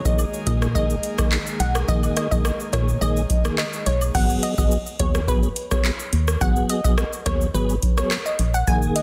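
A straight 4/4 dancehall groove at 106 BPM in G# minor, hypnotic and tough, rides on a booming analog drum machine with a deep kick, metallic hats, handclaps, rim click, shaker and crash sitting up front, a dark, hollow FM bass, a mellow tonewheel organ with key click and fast rotary speaker, a glassy wavetable pluck melody with chorus and delay, an airy, breathy pad pumping in the background until 4.1 seconds alongside very quiet, dry woodblock and cabasa, all over a dense, heavily limited mix as the harmony moves from D#sus4/A# to G#m7.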